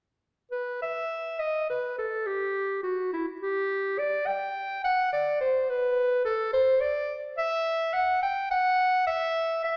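A clear, up-front solo clarinet carries this grave, solemn baroque-style fantasia, playing alone from 0.5 to 9.8 seconds in a flexible rubato within a 6/8 metre. Its classical-style line ranges from E4 to G5 and is set in a wet recital hall reverb that lingers around each phrase, giving this short fragment of a longer piece a spacious, solemn air.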